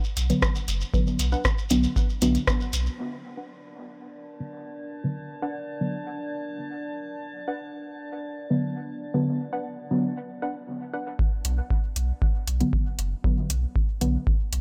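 A grainy shekere opens this meditative, cavernous dub techno excerpt, joined by a clean sine sub bass, a booming analog drum machine with metallic hats and rim clicks, and an overdriven electronic kick, before all four drop out by 3.0 seconds; a deep, nasal chord stab with chorus, phaser and dub echo pumps throughout, a muted, detuned filtered stab riff carries the middle under a filter sweep, and an eerie, warbling inharmonic FM drone hovers from 3.6 seconds until the kick returns at 11.2 seconds with the bass and drum machine close behind.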